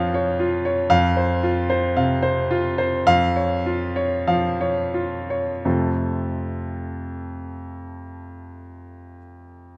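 Rubato in 4/4, moving between 83 and 120 BPM, this brilliant, sparkling classical piano study in F major slows through its first 5.6 seconds before settling into a new section. A solo grand piano with a clear, smooth, vintage tone sits up front, spanning F2 to F5 as the harmony moves from Db/F through F5 and back to Db/F, landing on F at 5.6 seconds. Close, detailed microphones capture it in a recital hall with moderate reverb, in this short cut from a longer piece.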